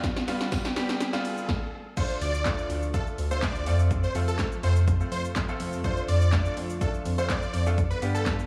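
Dance-pop with an energetic, driving feel, cut from a longer piece: a punchy, tape-tinged analog drum machine with crash, claps, hats, shaker, kick and snare fills a short build-up alongside a clear grand piano carrying slapback echo and sidechain pumping, a smooth, very quiet detuned pad, a faint riser and a brief jingle of distant tambourine, before a stop at 1.5 seconds. At 2.0 seconds the drop arrives as huge, lush detuned supersaw chords take the melody with digital delay and pumping, joined by a glossy, dark chorused synth bass with a plucky filter, up front and pumping too. A lush hall reverb gives a big arena sound over small room ambience as the harmony moves from Dm through F back to G7.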